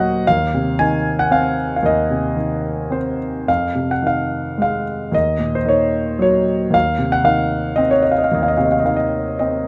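In a lilting 3/4 at 112 BPM, the beats fall unevenly and the phrasing breathes with a free rubato, giving this brief cut from a longer piece an unhurried, singing quality. It is lyrical classical music for solo piano, sunny and warm in mood, played on a concert grand tuned to A4 = 441 Hz. The piano spans Eb2 to Ab5, with a deep bass and a natural, intimate tone placed up front, close enough that the instrument's action noise is audible. The harmony opens on Ebm69 at 0.3 seconds, moves through Fm7 and Ebm7, and settles on a rich Ebm13 at 6.7 seconds. A light reverb gives the sound a gentle sense of space, and the fragment closes at 9.7 seconds.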